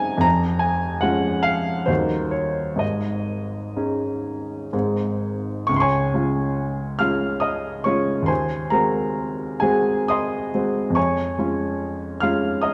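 Tender and dreamy, this short excerpt of a romantic classical nocturne in Db major features a warm, present baby grand piano up front, playing solo in a rubato 3/4 at 60-78 BPM across a range from Eb1 to F6, its chords drifting from Db/F through Ebm and Absus4 to Ab before a new section begins at 5.7 seconds and settles back on Db/F at 11.0 seconds, all bathed in the lingering reverb of a recital hall, with tuning set at A4 = 438 Hz.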